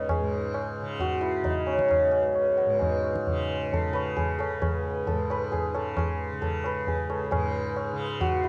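A home cassette recording with light reverb frames this introspective, meditative Hindustani classical fragment, cut from a longer piece and moving at 133 BPM in a straight 4/4. The hammered santur sits up front with a bright, ringing shimmer, carrying the melody between F#3 and B4 above a softly plucked, buzzing tanpura drone on C#. A high-tuned tabla, close and dry, keeps time from 0.1 seconds, and the music moves into a new section at 7.3 seconds.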